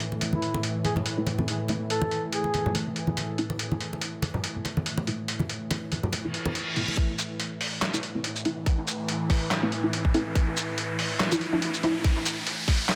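Soaked in a moderate echo-chamber reverb, this brooding, heavy deep dubstep fragment moves at 142 BPM in a swung half-time feel, rooted in A harmonic minor and slightly below standard pitch. A tense, nasal, string-like drone holds sustained chords throughout, bright and vibrato-laden with its own built-in reverb, under muffled, pitched-down sampler-style drums with handclaps, hi-hat, shaker and a medium-tuned snare that sound tape-warm and up front. Thick-skinned, low-tuned congas add acoustic percussion, and a mellow duduk opens with a brief folk-style solo phrase of scooped notes through dub echo. A muted, deep chord stab with a short filter pluck, phaser, ensemble chorus and dub echo moves over Am and E. A reverse cymbal at 6.3 seconds leads into a build-up at 7.0 seconds, where the congas stop, a tight, overdriven electronic kick drum enters prominently, and a riser climbs while a filter sweep works across the stab over Am and Dmadd9 until the cut.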